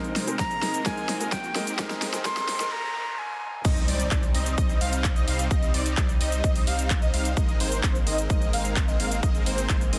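A straight 4/4 pulse at 129 BPM drives this anthemic, uplifting festival progressive house passage, cut from a longer piece. It opens with a build-up over Abadd9: a big-room dance drum kit with an overdriven, huge snare, handclaps, hi-hat, shaker and crash plays a fill, and a riff of detuned sawtooth supersaw chords carries a filter sweep through lush chorus, vintage 12-bit sampler grit and dub echo. A thick, warbling unison pad sustains in the background. Until 2.7 s, a soft, felt-muted upright piano with audible action noise pumps and echoes faintly behind, while a breathy, bright jazz flute with vibrato and a chiffy attack carries the melody. A very quiet riser and noise sweep lead into a short break. The drop lands at 3.6 s on C minor with an impact, bringing a deep triangle sub bass pumping beneath the punchy, overdriven electronic kick up front, and a catchy plucky unison lead playing arpeggios with ensemble chorus and dub echo before the harmony returns to Abadd9. 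The dense, heavily limited master sits in a digital ambience with a high-pass filter.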